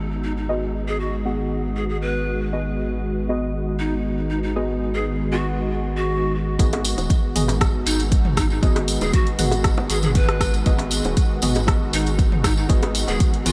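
Afro house at 118 BPM in G# minor, earthy and dreamy, opens on a G#m7 chord with a smooth, detuned analog pad under a filter sweep, a round, sine-like bass, breathy, reedy pan pipes carrying the melody through delay, and a soft, warbling chord stab, all drenched in huge ambient reverb. The pad, bass and stab pump with sidechain. At 6.6 seconds the drop arrives with an up-front, deep electronic kick, a deep house kit of dark hats, rim clicks and toms, tight high-tuned bongos kept very quiet, and a jingly, close tambourine.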